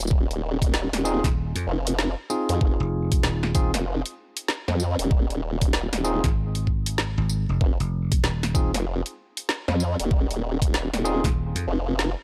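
Swaggering and funky, this glitch hop excerpt struts at 96 BPM in 4/4 with a 62% swing on the sixteenths, sitting in F minor on a single Fm7 chord throughout its roughly 12 seconds. A formant-sweep wobble bass runs from the first moment, a detuned pulse-and-sine tone with a fast attack and sustained, compressed body, thickened by chorus and tube saturation. A layered, overdriven drum kit of woody snare, bright hi-hats and tambourine also starts at the very top, and an overdriven electronic kick with a knocking punch joins at 0.1 seconds, all pushed up front. At 1.0 seconds a clean, bright tine electric piano drops in stabs in the middle register, pumping with sidechain and trailing an analog delay. At 1.2 seconds a dry, foam-muted slap bass adds a growly, thumbed second low line, sharing the same range as the wobble. Everything sits in a digital ambience that keeps the gritty hardware character of the mix.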